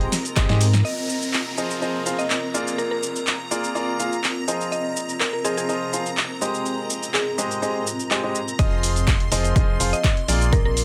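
A lightly swung 4/4 groove from a punchy analog drum machine of handclaps, hi-hat, shaker and snare drives this soulful, bittersweet piano house excerpt, where a brilliant concert grand riff with dub echo sits up front over shimmering vintage string-machine violins, a cloudy granular pad and a woody, mallet-like synth pluck melody, with a downlifter murmuring in the background from 0.8 s, until the drop at 8.6 s brings back the up-front electronic kick and the hollow, organ-like FM bass, which pumps with the sidechain.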